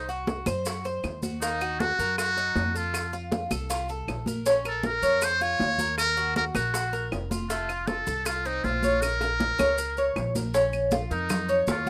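A muted trumpet leads up front with a buzzy, thin, brilliant jazz-style solo, its light vibrato and soft attack floating over a picked Cuban tres whose doubled metallic strings spin out arpeggios in this sultry, nostalgic Cuban son and guajira excerpt at 158 BPM in Bb harmonic minor. Underneath, a growly pizzicato upright bass thumps darkly while ringing, high-tuned congas, tight vintage-toned bongos, woody claves in the background and grainy, distant maracas fill out the percussion. A drum fill arrives at 9.0 seconds, leading into a new section at 10.5 seconds, all in a rough home demo mix with light reverb.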